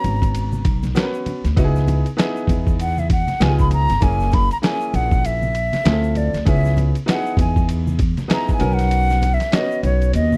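Jazz-hop with a cool, nocturnal mood at 98 BPM in a swung 4/4 and C# dorian, where a mellow, hollow silver flute carries the melody with vibrato and a slapback echo over brilliant upright piano chords, a woody pizzicato upright bass, a muffled, compressed, pitched-down sampler-style drum kit with a thumpy kick whose kick drops out at 8.9 seconds, and soft-handed congas and egg shaker in the background, all in a dry, close 1970s-style studio sound.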